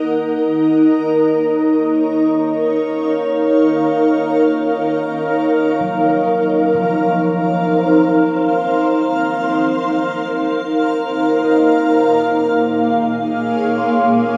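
Melancholic and serene, this ambient excerpt floats in free time, built on a dark, blurred granular cloud pad that sits up front, holding sustained chords with slow attacks and long releases, its detuned, evolving texture carried by its own built-in reverb. From 1.6 seconds a concert harp joins in the background, its ringing, thumb-plucked arpeggios fading in through an analog delay, as the harmony moves from Ebm9 to Bbm7 at 11.4 seconds. The dreamy mix is soaked in a lush hall reverb over a small room ambience.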